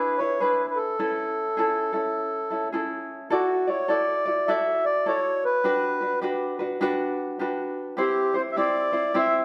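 Set in a moderate recital-hall reverb, this relaxed, dreamy Hawaiian excerpt swings gently at 103 BPM in 4/4, with a reedy, round, close-miked accordion carrying the melody up front over light, fingerpicked acoustic tenor ukulele accompaniment, moving from A major through E7 and Amaj7 before shifting to D major at 3.3 seconds for Dadd9, Gmaj7 and C chords.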